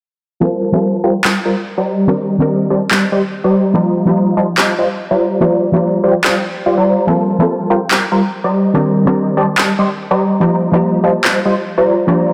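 A punchy, detuned supersaw stab carries the riff up front through a phaser and low-pass filter, while a soft, round, dark pluck with subtle chorus, cassette-tape colour, delay and a filter sweep supplies accompaniment over Gm11, Cm9, F9sus4 and Bb6 chords, and layered electronic handclaps entering at 1.2 s drive this bittersweet, emotional half-time future bass fragment, cut from a longer piece and set in a lush hall reverb under a dense, heavily limited master.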